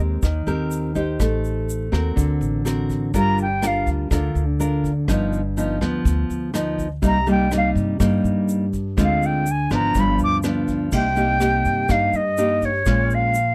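An airy silver concert flute with vibrato carries the melody of this melancholic, smooth bossa nova excerpt in C minor at 123 BPM, touching in briefly at 3.2 seconds before returning at 7.1 seconds to sing through to the end. Underneath, a fingerpicked nylon-string guitar in a classical style plays up front beside a woody, growly pizzicato upright bass. A vintage brush drum kit with dark cymbals and a punchy kick, plus a grainy egg shaker, keeps the groove in a dry, close 1970s-style studio sound.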